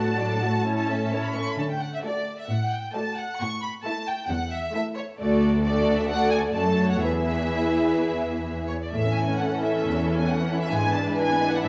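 A worn, warbling cassette-tape sound with drifting pitch colours this brief cut from a longer classical-period movement for string orchestra, heard through a wet recital-hall reverb. Lively and cheerful at roughly 124-136 BPM in 4/4 with a rubato feel, it settles into A major from 5.2 s. The first violins carry an intense, up-front melody, the second violins add a focused second line, the violas give a clear, distant accompaniment and the cellos hold a smooth, even bass, all four sections bowed with vibrato as the harmony moves through D, A and E before a new passage at 8.9 s that closes on E7/G#.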